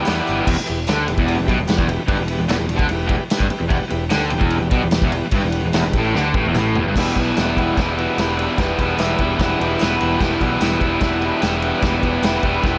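Swaggering and menacing, this garage rock excerpt from a longer piece drives along at 148 BPM in a straight 4/4, centred on E minor. A bright, overdriven guitar sits up front and double-tracked, picking out a raw riff from the opening moment, while a picked electric bass with gritty fuzz anchors the low end. A vintage acoustic drum kit with dark cymbals, a medium-tuned snare and a tight kick keeps the beat, its rolled-off top giving it a rounded, natural character. Behind them, a reedy, clean combo organ holds sustained chords and a jingly, band-limited tambourine adds shimmer deep in the background. A drum fill from 6.1 to 7.0 seconds ushers in a new section, and the whole band sits in a modest small-room reverb that keeps the sound close and live.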